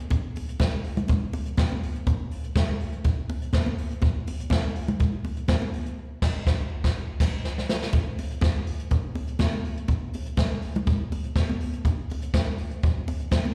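A brushed jazz drum kit sits up front in this glamorous, danceable disco excerpt, its roomy sound holding dark cymbals, a medium-tuned snare and a boomy kick, while bright, damped, high-tuned congas played with soft hands carry a slapback echo, and a band accent from 6.0 s leads into a drum fill at 7.4 s, the performance heard live through a venue's PA with recital hall reverb.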